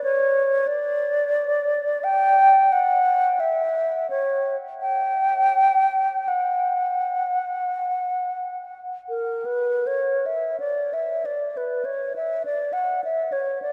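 Bathed in a wet cathedral reverb with a 6.6-second tail, this lonely, yearning classical fragment, cut from a longer piece and tuned to A4 = 435 Hz, features a mellow, hollow, wooden-headed alto flute playing alone and up front from 0.0 to 13.7 seconds between A#4 and G5, its airy vibrato tone, crisp attacks and rolled-off highs drifting in free rubato at roughly 35-52 BPM before a new section begins at 10.6 seconds.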